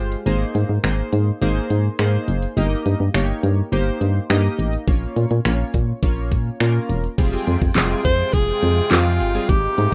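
A driving, energetic dance-pop excerpt opens with glossy, detuned retro synth keys pumping against a punchy, round FM bass and a smooth R&B drum kit with a knocking kick, fat snare, snaps and handclaps over chords moving from Abadd9 to Fmadd9, before a reedy musette accordion enters at 7.2 seconds and an edgy, forceful alto saxophone with scooped notes takes the lead at 8.0 seconds in a dry, rough home-demo mix.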